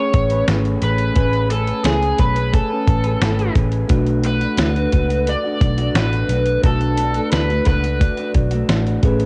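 Hazy, lo-fi cassette sound with light reverb and a muffled top end frames this nostalgic indie and bedroom-pop excerpt at 88 BPM in a straight 4/4: an overdriven slide guitar carries the melody until 8.3 s over a bell-like tine electric piano sitting in the background, a slightly broken-up guitar through a small old amp with lush chorus and warbly pitch drift, a dark, round, foam-muted picked bass and a gritty, compressed sampler-style drum kit with thumpy kick and fat snare, as the chords move from Amaj9 to Bm7 at 3.9 s.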